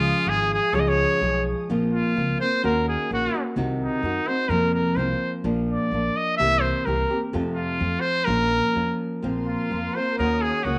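A bright, vintage-toned solo trumpet leads up front over fingerpicked nylon-string guitar, woody pizzicato upright bass and a veiled, muted violin section bowing soft sustained chords in the background for the first 1.7 seconds and again from 9.3 seconds, in this proud, festive mariachi excerpt in Bb minor at 127 BPM in 2/4, set in a small room with a wet spring reverb.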